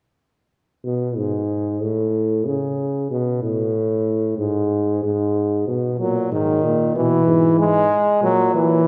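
Set in a resonant recital hall with a wet reverb, this elegant and stately classical canzona excerpt for brass ensemble moves at a steady 94 BPM in 4/4, opening at 0.8 seconds with a mellow, distant bass trombone carrying the low line with a soft attack and light vibrato, and a close-miked, warm trombone joins up front at 6.0 seconds with its accompaniment over harmonies that move from G#m through A and B to E.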